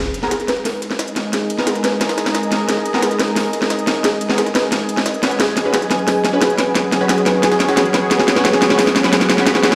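A straight 4/4 pulse at 177 BPM drives this dark, technical drum and bass fragment in G# minor, aggressive and futuristic in mood, as an up-front electronic kit with a cracking snare and crisp hats fills the whole span with a drum fill, shadowed by a very quiet, gritty, pitched-up jungle sampler kit adding hi-hat, ride and a high-tuned snare. Underneath, a sweeping resonant pad of detuned sawtooths holds sustained chords with chorus, moving from G#madd9 to F#sus4 at 5.4 seconds. A soft, round pluck spins arpeggios through ensemble chorus and dub echo while a filter sweep runs across it through the passage. A bold, punchy orchestra-hit-like stab, layered with noise and treated with phaser, dub echo and its own reverb, sits in the background from the start, and from 1.2 seconds a blurred, granular cloud pad drifts in high above. The whole passage works as a build-up, with a faint electronic riser entering at 6.4 seconds, all set in a lush hall reverb that sounds as if played through a big sound system in a bare room.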